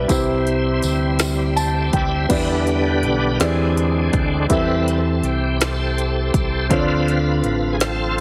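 Heavily compressed with a radio-like sound and light reverb, this short cut from a longer slow gospel piece moves at 54 BPM in a straight 6/8, hopeful and soulful over chords of C, Em7, E7alt, Am7 and Dm7. An intimate grand piano, its action noise audible, plays alongside a bright, shouting tonewheel organ with key click, chorus vibrato and a slow rotary speaker, while a round, punchy fingered electric bass and a deep house drum kit with a deep kick, woody snare and smooth hats hold the groove. A close, jingly tambourine plays until 1.9 seconds, piano and organ each add a fill from 1.2 seconds, and the up-front organ takes a solo from 2.3 seconds.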